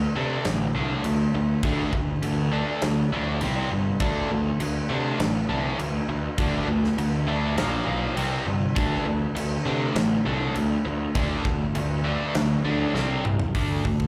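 A straight 4/4 pulse at 101 BPM drives this menacing hard rock clip from a live gig, heard through the venue's PA with light club reverb, as a bright, double-tracked overdriven guitar riff churns through D5, C5 and Bb5 power chords over a round, fuzzy picked electric bass. At 0.4 seconds a huge acoustic arena kit enters with a punchy kick, medium-tuned snare, bright cymbals and a pumping hall sound. Guitar, bass and drums all sit up front, and a drum fill at 13.0 seconds leads back to D5 before the clip cuts off.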